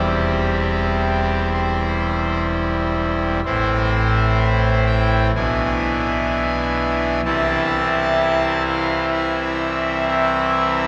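A pipe organ on its trumpet stop carries this solemn, grave chorale alone, its brassy, baroque voicing sitting up front across a span from deep pedal notes to a high treble. The slow, straight pulse moves from a C major opening into A minor at 3.5 s, passing through an E7 harmony before settling on A minor over C. A wet cathedral reverb with a long 4.3-second decay surrounds this short fragment cut from a longer piece.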